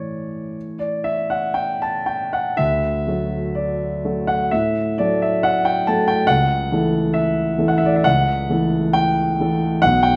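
Flexing freely in rubato over a 4/4 pulse at 57-71 BPM, this tender, nostalgic romantic nocturne fragment for solo concert grand piano, tuned slightly low to A4 = 437 Hz, moves from A to D at 2.6 s and settles on A/C# at 6.3 s, its open, up-front tone and deep bass reaching from B1 to A5 and ringing in a wet recital hall reverb.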